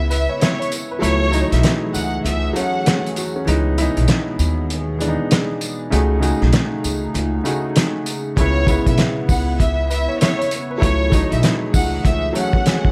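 A cloth-damped, thuddy drum kit with a fat snare and gritty, muffled punch drives this tough, dark boom-bap hip-hop excerpt, backed by woody pizzicato upright bass, a smooth vintage grand piano with cassette-tape colour, a hollow flute-like pad in the background and a faint jingly tambourine, while a bowed violin section with vibrato and tape echo carries the melody at the start and returns at 8.4 seconds over vinyl crackle and light reverb.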